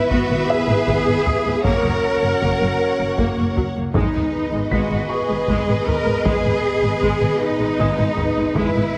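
Two lush bowed violin lines sound together, one carrying an expressive melody with soft-attack vibrato and the other a focused second line, over dark, distant French horn chords, an up-front rich cello bass, smooth background violas, portamento double basses, heavy-stick taiko and a very quiet clear grand piano with audible action noise, in a brooding, futuristic hybrid orchestral and electronic film score in G# minor at 52 BPM in 6/8, set in a wet scoring-stage reverb with a heavily compressed radio sound and cut from a longer piece.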